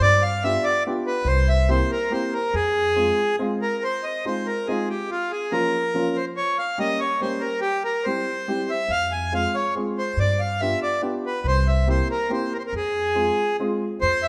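A reedy accordion carries the melody up front from the very start of this nostalgic, whirling musette waltz in F minor, joined by a dark, acoustic pizzicato upright bass with steel strings that drops out at 3.1 seconds and returns at 8.9 seconds. A worn, slightly detuned upright piano with a clear, woody, open tone sits lower in the mix as accompaniment, moving through changes such as Bbm and Gdim at a lively 142 BPM in 3/4. Moderate recital hall reverb surrounds the parts, and the clip is cut from a longer piece.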